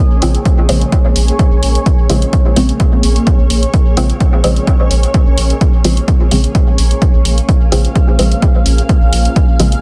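Dub techno at 128 BPM in Bb minor, hazy and deep, this short cut from a longer piece rests on a single Bbm9 chord while a punchy, dry electronic kick sits up front with a dry electronic hi-hat and a round, soft sub bass on Bb1, all swung lightly on the 16ths. Muted sawtooth chord stabs with a quick filter pluck carry chorus, phaser and dub echo under a filter sweep that runs the whole length, while a cloudy, blurred granular pad of detuned sines drifts darkly in its own reverb. The stabs, bass and pad pump through sidechain compression, and the dense, heavily limited master places everything in a digital ambience.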